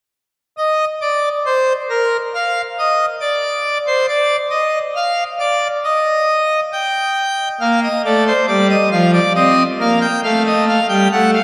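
A pipe organ on full organ with mixtures plays alone and up front from 0.6 to 11.4 s, its brilliant, majestic tone and romantic voicing ranging from F3 to G5 in this baroque-style three-part fugue. The classical passage moves at a stately yet lively 68 BPM in straight 4/4, opening with unaccompanied lines before Bb and Cm7 harmonies arrive. A cavernous church reverb with a long 3.8-second decay surrounds the organ, and the clip is cut from a longer piece.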